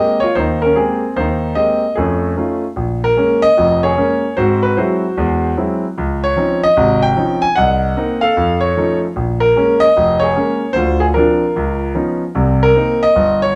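A swung eighth-note feel at 150 BPM in 4/4 drives this short solo jazz passage, cut from a longer piece, with a sophisticated, swinging mood. A grand piano carries everything alone from 0.0 to 13.5 seconds, its tone natural and up front, ranging from a deep F1 in the bass to Ab5 at the top. The harmony moves through rich extended and altered chords, opening on Abmaj9 and F7alt before settling into a longer stretch at 2.8 seconds that passes through Bbm7, Abaug7, Dbmaj9 and a Cm7b5 to F7b13 turn. Later colours include Dm7 and Db9 before the passage closes on Cm7. A wet studio reverb with a 0.8-second decay gives the piano a live, roomy sound, as if captured in a single space.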